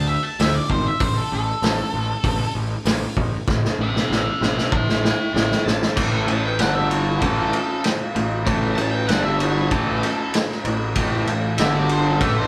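Blues rock power trio meets southern rock in this gritty, raunchy excerpt at 96 BPM in A mixolydian, opening with a dark, fuzzed-out octave lead guitar soloing over growly, bright fuzz bass and a saturated vintage drum kit with punchy kick and dark cymbals, up front, whose fill runs from 3.5 to 6.0 seconds. At 6.0 seconds a raw, double-tracked garage guitar riff enters, moving between A5 and G5 chords, and a smooth overdriven second lead guitar joins in the background at 6.3 seconds. The whole band sounds like it is playing live in one large studio room with moderate reverb.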